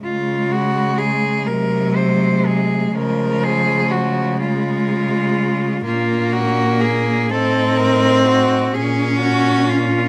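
A smooth, even cello carries the melody up front with vibrato in this melancholic, solemn classical fragment for cello ensemble in Db major, unfolding in a rubato 6/8 at 41 BPM (dotted quarters), as a rich, focused second cello sings a distant inner line in the background, a close, intimate third cello plays sul tasto accompaniment with an airy bow and soft attack, and a fourth cello anchors the bass with expressive portamento, the ensemble set in light reverb.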